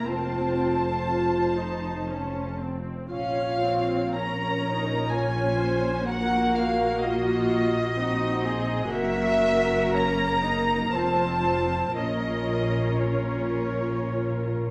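Classical music for string orchestra, this is a slow, elegiac romantic movement in 3/4 with a rubato feel, drawn from a longer piece and steeped in melancholy. Muted violins carry the melody up front, their con sordino tone veiled and dark with soft attacks and vibrato, while a second muted violin section sings a quieter line beneath them. A muted viola section sits close alongside the melody with bowed accompaniment, and muted cellos hold the bass in the background, their smooth, shadowed tone touched with vibrato. A muted double bass section supports the bass from a distance, soft-edged and with only light vibrato. All five sections play together from the start to about 14.7 seconds, bathed in a reverberant recital hall, as the harmony moves from F through B-flat minor, E-flat minor over B-flat and G-flat seventh before returning to F and B-flat minor.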